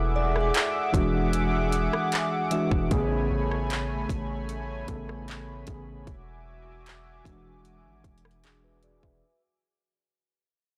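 Smooth and romantic, this brief contemporary R&B excerpt at 76 BPM fades out across its full length as a shimmering, detuned pulse-width pad sustains chords moving from E9 to Amaj9 and back over a deep, sine-toned 808-style bass, the pad pumping with sidechain, while a glassy, crystalline FM bell with chorus and delay glints in the background until 3.3 seconds. An up-front trap kit of hard-clipped kick, metallic hi-hats, handclaps and rim clicks enters at 0.4 seconds, and a mellow, clean tine electric piano joins at 0.9 seconds. The whole sits in a digital ambience with a blown-out, overdriven recording quality.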